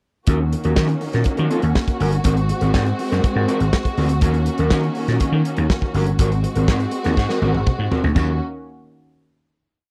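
Sultry and glamorous, this short disco piece rides a dry, close 1970s-style groove in which a tight-kicked soul drum kit drives a four-on-the-floor beat with sixteenth-note hats, a growly, punchy slap bass weaves a syncopated line full of muted ghost notes and chromatic approach notes, a slightly broken-up electric guitar with subtle chorus chops out a choppy sixteenth-note disco part, and a lush, woody string section holds a dark, vibrato-rich pad over alternating Ebm7 and Ab9 harmony, before a drum fill at 7.2 s leads to a final Ebm7 chord at 8.2 s.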